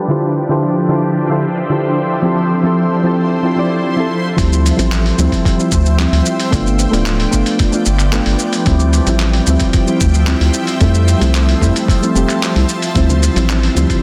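A filter sweep opens this sunset chillout excerpt as soft, warbling electric-piano-style keys and a shimmering, ethereal pad drift in together over Dm11 and Fmaj7 chords, the keys dark and up front with chorus, tape echo and shimmer reverb, the pad detuned and granular with phaser and an octave-up shimmer. At 4.4 seconds the groove arrives in straight 4/4: a round, deep analog bass sits up front, joined by a gritty, thumpy overdriven kick and a dusty, compressed sampler-style kit of handclaps, hi-hat and shaker. The harmony moves through Dm11, G7 and Fmaj7 before settling back on Dm11, keeping the mood smooth and warm. Near the close, at 13.1 seconds, very quiet bongos and congas ring out from a distant, large room. A lush hall reverb surrounds the mix, and the dense, heavily limited master carries a low-pass filter.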